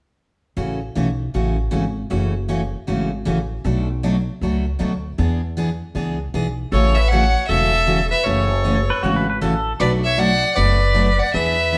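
A moderate stone room reverb surrounds this live-in-one-room performance, a cheerful, playful western swing country piece cut from a longer work, moving at 156 BPM in 4/4 with a swung eighth-note feel in A major. From 0.6 seconds, a bright, full-bodied, picked dreadnought acoustic guitar sits up front, picking through A6, F#m9, Bm7 and E7, while a woody pizzicato upright bass with steel strings anchors the low end beside it. At 6.7 seconds the second section opens, and a clear, focused, boxy bowed fiddle takes the melody up front with light vibrato. A punchy, forceful clarinet in a jazz style adds a second line that sounds distant and roomy. Around 8.9 seconds, an electric pedal steel guitar, clean and compressed, briefly slides in with fingerpicked volume swells and a warm tone.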